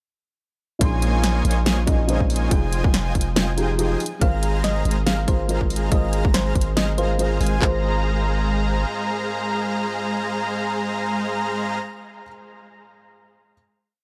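This euphoric, lush future bass piece opens at 0.8 s straight into a half-time, lightly swung drop. A huge, thick, detuned supersaw riff with tape grit pushes held chords in syncopated throbs, joined by a soft, dark felt-muted upright piano with audible action noise and an airy, dreamy lead doubling the chords in the background. A deep, sine-based 808-style bass follows the chord rhythm up front, while a pop kit with a fat snare and hat rolls and a trap kit with a hard-clipped kick and claps sit in a small room. At 4.2 s a round, tine-like thumb-piano-style pluck enters quietly in the background with a repeating riff, washed in chorus and delay. The supersaw, piano, lead and pluck pump against the sidechain, and the supersaw, piano and lead carry dub echo, all set in a digital ambience. From 7.6 s the drums drop out and the piece settles into a final chord, with the bass, then the lead and supersaw, then the pluck and finally the piano dropping away in turn.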